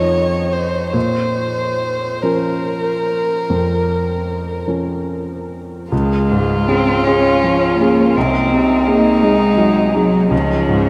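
Rubato phrasing in a slow 12/8, with the dotted-quarter pulse easing between 45 and 57 BPM, carries this yearning, melancholic fragment of a romantic piano trio movement that turns from B-flat minor to D-flat major at 5.9 s. A warm, expressive violin sings the melody with vibrato and portamento over a clear concert grand with deep bass and short sustain. A bowed cello enters at 5.9 s with a second line, and everything sits in a vast, echoing space with a huge, wet reverb.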